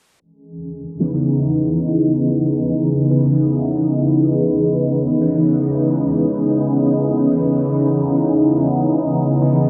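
Cavernous and nocturnal, this techno fragment opens on a cloudy, evolving granular pad at 0.5 s, its blurred, wave-folded chords held mellow in the background, joined at 0.7 s by an eerie, metallic FM drone with a nasal, warbling vintage character, chorus and its own reverb. At 1.0 s a juicy, detuned sawtooth polysynth cuts in up front with bright, resonant stabs carried by a filter sweep, thickened with chorus and phaser and trailed by dub echo. The whole sits in a moderate echo-chamber reverb with a digital ambience and a low-pass filter over the mix.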